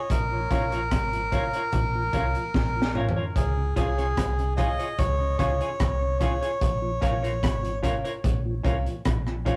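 A reedy, breathy melodica carries the melody from the start, up front with analog delay, in this sunny roots reggae excerpt at 74 BPM. A dark, round dub bass and a crunchy, gritty breakbeat kit with a punchy kick and high-tuned snare settle in over Bbm and Db chords, while a picked clean electric guitar, woody, slightly detuned upright piano stabs with audible action noise, and a very quiet tonewheel organ with slow rotary vibrato fill out the accompaniment. A drum fill arrives at 2.5 seconds, the melodica stops at 7.8 seconds, and the rough rehearsal-room sound carries small-room reverb and warm saturation.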